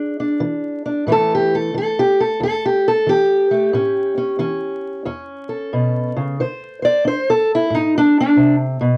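This acoustic country blues excerpt struts along at 90 BPM in 4/4, with a swung eighth-note feel and a gritty, swaggering mood in A mixolydian. The only instrument is a fingerpicked steel-string acoustic guitar with a dark, boxy parlour tone. It sits up front in the mix, colored by a cassette tape effect, and spans from E2 up to D5. The guitar opens on an E7 chord, then moves into a solo passage from 1.1 seconds on A7 before landing on D5 at 6.4 seconds. Light reverb, vinyl crackle and the feel of a home cassette recording give the short clip a worn, intimate character.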